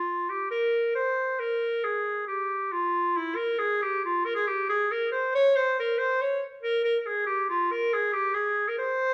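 In a straight 4/4 feel that gradually speeds up, a soulful, bittersweet klezmer passage unfolds as a brief cut from a longer piece. A bright clarinet plays solo in classical style, sitting up front yet sounding distant and roomy, for the full 9.1 seconds. A generous large-studio reverb and the sense of a band playing live in one room lend the line a spacious, atmospheric air.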